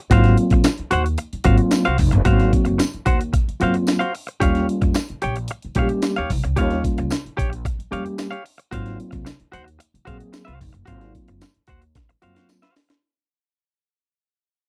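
A twangy, picked clean electric guitar opens this cool, dry, close 1970s-style funk excerpt, joined by mellow tine electric piano stabs up front, a woody pizzicato upright bass, a gritty, compressed breakbeat sampler-style kit with a thumpy kick and high-tuned snare, and a faint jingly tambourine, all moving between Ab13 and Eb9 as the whole passage fades out, closing with a drum fill at 12.0 seconds.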